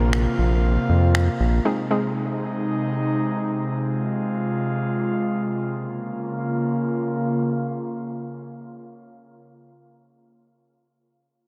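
In free time, this energetic, driving dance-pop fragment in Bb minor opens with a deep, round analog bass up front, a hollow, bouncy square pluck in the background, electronic finger snaps, a barely audible downlifter and an airy, breathy pad over the Bbsus2 and Ab chords. All but the pad fall away by 2.6 s, leaving it to carry the Fm and Bbm chords alone until 9.4 s, in a dreamy mix soaked in huge ambient reverb.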